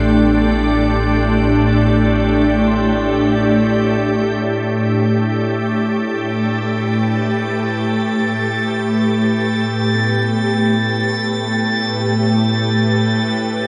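This ambient passage, cut from a longer piece, floats in free time with a melancholic yet serene mood. A soft, organ-like pad carries sustained chords throughout, its pure, full-bodied tone sitting up front with slow attacks, long releases and a gentle ensemble chorus. A round, deep analog bass holds the low end, joined by a barely audible, string-like drone with a tense, detuned edge and vibrato, until about 4.4 seconds, when both fall away. High above, a drifting glass-harmonics texture adds glassy overtones with chorus, while a barky, lightly overdriven tine electric piano enters at 0.2 seconds with very quiet arpeggios. The harmony rests on Am9 before shifting to G/A near the close, all bathed in the long tail of a concert hall reverb.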